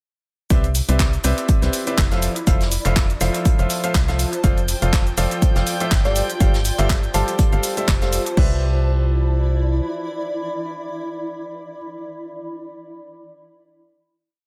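An echo-heavy mix with light reverb and a small room ambience opens this euphoric, uplifting piano house piece in C major at 122 BPM, swung gently on the sixteenths. A clear, boxy grand piano plays dotted-rhythm chords in close voicing with short sustain, pumping against the sidechain and trailed by analog delay, while an up-front, hollow FM bass with an organ-like bite drives a dotted-rhythm line beneath it from 0.5 to 9.8 seconds. A punchy, tape-warm four-on-the-floor kick leads the drums, joined by a programmed house kit of shaker, hats, claps and crash, and a very quiet brushed breakbeat with a rolled-off top tucked underneath. A cloudy, blurred granular pad drifts in at 1.4 seconds with slowly shifting chords, and a distant, reedy violin section holds a high note in the background from 4.4 seconds. Short answering phrases on a sparkling, bell-like FM electric piano with chorus and tremolo flicker briefly before the drums fall away around 8.5 seconds, leaving the final Cmaj9 chord to ring out.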